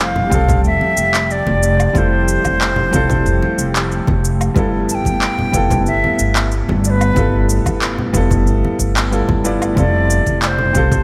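Relaxed and warm, this sunset chillout passage moves at 92 BPM in F lydian, with a bright wooden flute carrying the tongued, straight-tone melody up front through a digital delay, over an intimate grand piano whose action noise is audible and whose part also runs through delay. A breathy, detuned pad with chorus holds soft sustained chords in the background, while a woody, thumpy pizzicato upright bass anchors the harmony as it moves from Fmaj9 to G13 and back to Fmaj9 at 9.8 seconds. Ringing congas played with hard hands and a punchy, overdriven electronic kick layered with overdriven cabasa, handclaps and woodblock enter just after the start, and the mix sits in a moderate plate reverb with a bright 1980s-style digital production.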